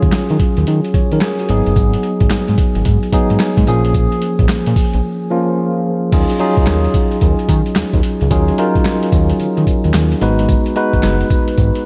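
Confident and slick, this new jack swing excerpt in Eb minor moves at 110 BPM with a 16th-note swing, cycling through Ebm11, Abm7 and Bbm7 with a break from 5.0 to 6.1 seconds. A clean tine electric piano sits up front, heard through its built-in speakers, over a fat, detuned analog bass of sawtooth and square tones with a moving notch. A compressed, pitched-down sampler-style drum kit brings a thumpy kick, a medium-tuned snare, handclaps, hi-hat, tambourine and crash cymbal with gritty tape character from a small room, while a grainy, bright tube shaker stays in the background, all within a dark, warm production under light digital reverb.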